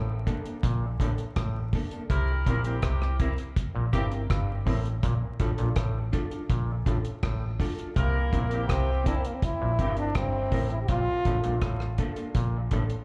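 The bright, punchy trombone stands out, carrying the melody up front from 8.0 seconds with a light vibrato and dub echo before dropping out around 11.6 seconds. Beneath it sits a laid-back roots reggae groove at 82 BPM in a straight 4/4, built on a round, foam-muted vintage fingered bass and a deep drum kit of hi-hat, tight kick and rim click with a dry, rolled-off top. An overdriven auto-wah clav plays a stringy, percussive riff with slapback echo, while a dark, clean electric guitar adds fingered accompaniment treated with tremolo, dub echo and slapback. A loose, vintage-sounding horn section carries a second line from 2.1 to 9.9 seconds, its light vibrato washed in dub and slapback echo. The harmony moves between Bbmaj7 and C7, and the excerpt sounds like a live club gig heard through the venue's PA, with club reverb and a layer of vinyl crackle.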